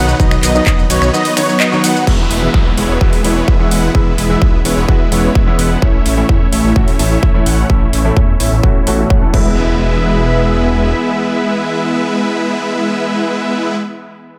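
Triumphant and anthemic, this festival progressive house cut at 128 BPM in E major opens mid-drop, with a punchy, up-front electronic kick and a house kit of metallic hats, handclaps, finger snaps, shaker, ride and crash driving the straight 4/4 pulse. Huge, full-bodied supersaw chords carry the riff through sidechain pumping and dub echo, and a low-pass filter sweeps across them from 2.1 to 9.6 seconds. Beneath them a thick, saturated detuned saw bass pumps along until 10.9 seconds, while a lush, slow-attack pad and a clear grand piano hold sustained chords and accompaniment in the background. A bold, nasal unison lead with vibrato spins warbling arpeggios only in the opening two seconds, and a band accent lands at 1.6 seconds, shortly before the drop ends at 2.1 seconds. The harmony moves from B to E, A and back to E, the drums stop at 9.4 seconds, and very quiet downlifters and impacts mark the transitions under a light digital reverb.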